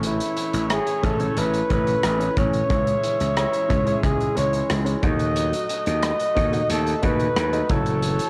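Nostalgic and moody, this 1980s-style pop excerpt in C# minor moves at 90 BPM as an up-front flugelhorn sings a scooped, lightly vibratoed melody with analog delay over a growly overdriven slap bass, a punchy studio drum kit of kick, hi-hat and rim click, a polished baby grand piano in the background, a very quiet twangy clean guitar riff and faint horn-section stabs, all passing through A, C#m, D#dim and F#m7 with the light reverb of a home cassette recording.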